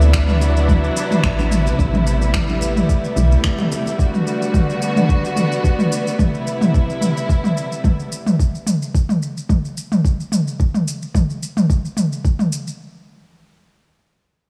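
A dark, bowed chamber string section with vibrato opens this meditative, mystical piece of organic downtempo, pumping against a woody, round FM bass and a softly swung, overdriven electronic kit of finger snaps, shaker and toms, with faint, bright congas underneath. The bass drops out at 3.4 seconds and the congas at 4.0, while the smooth strings sustain chords moving from D13 through Am9 and Gmaj9 until 8.4 seconds. A soft, overdriven electronic kick and the kit of snaps, shaker and toms carry on after the strings fall away, the kick stopping just before the kit ends at 12.8 seconds, all set in a lush hall reverb that gives the recording a big arena feel.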